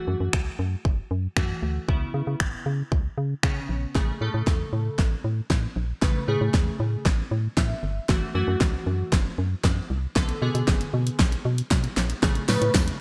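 A layered electronic pop drum kit sits up front in this dance-pop excerpt, its punchy kick and fat snare wrapped in gated reverb alongside finger snaps and hi-hat, with a build-up and drum fill running from 4.0 seconds to the end. Beneath it, a hollow, dark, organ-like FM bass plays with a fast attack and a decaying tail, pumping with sidechain compression. Glassy digital keys built from sine and triangle tones with a sub octave carry the chords through a chorus effect, a filter sweep and the same pumping motion, adding a short fill at 7.3 seconds. The harmony moves through minor-seventh and major-seventh chords, giving the steady, straight groove a bittersweet yet confident mood. A very quiet, jingly acoustic tambourine slips in at 12.5 seconds, and the bright 1980s-style digital production is finished with light reverb and digital ambience.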